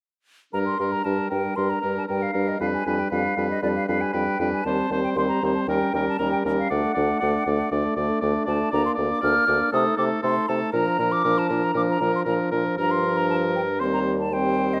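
Moving in a straight 4/4 at 117 BPM, this quick classical-period movement for wind quintet has a restless, dramatic mood, cut from a longer piece and opening in G minor before turning toward Bb major from 8.7 s. A hollow, pure-toned concert flute carries the melody high above the ensemble, its crisp attack and vibrato giving the mellow line clear definition. Beneath it, a clear oboe with light vibrato and a soft attack sings a second line, while a clear French horn and a punchy clarinet fill in the accompaniment in the middle register. A mellow bassoon anchors the bass, and all five instruments play together from 0.5 s to 14.8 s. Close, detailed microphones capture each voice distinctly within a moderate recital hall reverb that lends the ensemble a sense of space.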